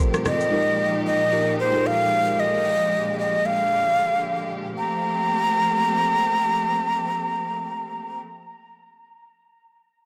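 A blown-out, overdriven recording with light reverb and small-room ambience gives this late-night amapiano fragment, cut from a longer piece, a deep cast. A brief electronic shaker and rim click sit up front with 12-bit sampler grit and soft clipping on the snare, glassy chorused digital keys strike and decay before dropping out at 2.7 seconds, and a lush bowed string section holds smooth, vibrato-rich chords over Gm11 and Fm11 harmony. From 0.3 seconds a breathy jazz flute carries an expressive, up-front melody with tape echo and gentle vibrato.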